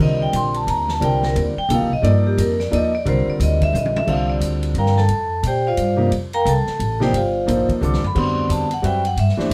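A dark, ringing vibraphone solo with medium hard mallets and the motor off opens this cool, searching modal jazz excerpt in swinging 3/4, alongside an intimate, vintage grand piano with audible action noise and a woody, thumpy pizzicato upright bass; a punchy big-band drum kit joins at 0.3 seconds and adds fills at 3.7 and 7.8 seconds as the harmony moves from Cm9 to C9sus4 and D9sus4, set in a moderate studio reverb.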